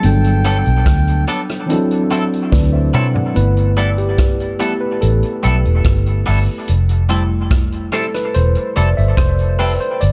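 Lovers rock reggae at 72 BPM in 4/4, tender and sweet, cut from a longer piece: a reedy melodica phrase with tape echo sounds only until 1.2 seconds over a worn, slightly out-of-tune tine electric piano with dub echo, a round, foam-muted fingered bass and an up-front vintage drum kit with a punchy kick, while a twangy, bright guitar adds compressed stabs with lush chorus, tube saturation and dub echo, and after a drum fill the electric piano takes a solo from 3.4 seconds as the harmony settles into G mixolydian, all in a studio reverb with a dark, warm production.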